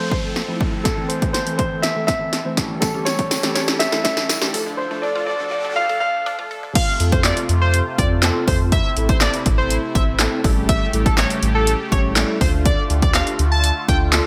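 Dance-pop with a summery, carefree mood and a straight 4/4 metre, cut from a longer piece and given a bright 1980s-style digital sheen with light reverb. It opens on a build-up in which a warm grand piano carries the melody through digital delay over a mellow tine electric piano and a soft, detuned supersaw holding sustained chords with phaser, both pumping under sidechain compression, while a very quiet riser and downlifter sweep beneath. A punchy, tape-warm analog drum machine sits up front with kick, snare, handclaps, hi-hat and crash cymbal in gated reverb, playing a drum fill before a short break, and a woody, mallet-like FM pluck adds faint arpeggios alongside a jingly tambourine in the background. At 6.8 seconds the drop arrives as a bold, retro octave-doubled lead takes over the melody with chorus, vibrato and digital delay. A round, deep analog bass joins at 7.0 seconds, pumping with the sidechain as the chords cycle through F, Am, A7 and Dm.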